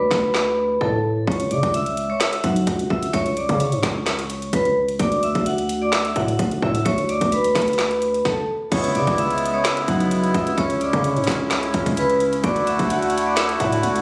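Hip hop trap at 129 BPM in a half-time feel, eerie and hard-hitting in C# phrygian: a metallic, ringing vibraphone with hard mallets carries the melody through tape echo over a growling, buzzy 808-style bass and an up-front electronic trap kit with a hard-clipped kick, woody snare, metallic hats, handclaps and crash, opening on a break until 1.3 seconds, pausing for a stop before a reedy accordion enters with sustained chords at 8.7 seconds, all set in digital ambience with a phone-in-the-room, studio-reverb character as the chords move between C#m and Dadd9.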